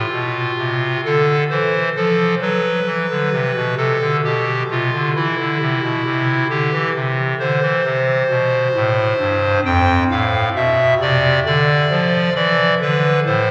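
A long cathedral reverb, lasting about 4.3 seconds, surrounds this short classical excerpt, and the listener seems placed further back in the room. A pipe organ plays alone from 0.0 to 13.5 seconds on a solo clarinet reed stop, its hollow tone carrying a chiff and a baroque voicing that keeps it up front despite the distance. The chorale-style writing moves in 3/4 with rubato, spanning from F2 up to G5. The harmony passes from F through D7, G7/B and C to A minor, then returns to F, touches a diminished chord on B, and comes to rest on a bare E5 sonority. The mood is reverent and majestic, and the passage is cut from a longer piece.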